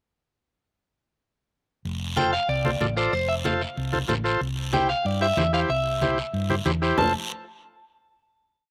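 This dry recording was captured outdoors with little reverb, and it gives a short, complete cumbia piece a sunny, festive glow. It moves at 187 BPM in 4/4 with a straight feel in F major, passing from F to C and settling back on F for a final chord at 7.0 seconds. A dark, round hollow-body bass enters first at 1.8 seconds with a cumbia bass figure, and a raspy guiro playing a long scrape followed by two short ones joins almost at once. From 2.2 seconds a twangy, picked electric guitar sits up front with a motif-based melody, its slightly broken-up tone colored by spring reverb and slapback echo. Beside it, a buzzy, overdriven vintage combo organ, also carrying slapback, plays rhythmic triad chords, while low-tuned, ringing congas struck with hard hands add off-beat accents.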